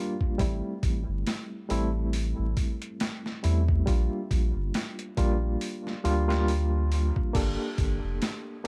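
Trip hop at a slow 69 BPM with a swung 4/4 feel, melancholic and cinematic, cut from a longer piece: a barky, reedy electric piano with overdrive, fast tremolo and tape echo sets out chords from Am7 to Bb6 and then Gmadd9 at 7.3 seconds, joined at 0.2 seconds by a gritty, compressed boom bap sampler-style drum kit with a thumpy kick and crash, and at 0.4 seconds by a round, deep, dark analog bass, all three parts up front in a dry mix flecked with vinyl crackle.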